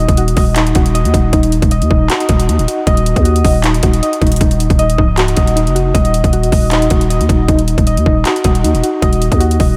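A half-time trap groove at 156 BPM in 4/4 drives this brief, eerie cut from a longer piece, with a trap drum kit of hard-clipped kick, metallic hi-hats and handclaps entering at 0.1 seconds and sitting up front with a tape-warm, produced edge. Beneath it, a growling 808-style bass holds the low end in Eb minor, its buzzy, sine-based tone striking with a fast attack and then decaying. Above, soft electric-piano-like synth keys play arpeggios between Eb4 and Eb5, their round, mellow triangle-and-sine tone shaded by chorus, tremolo, a low-pass filter and a diffuse ambient delay. The harmony rests on a single Ebm chord throughout, lending the brooding mood a suspended, hovering quality. Light reverb and a digital ambience frame the mix, which runs just under 10 seconds.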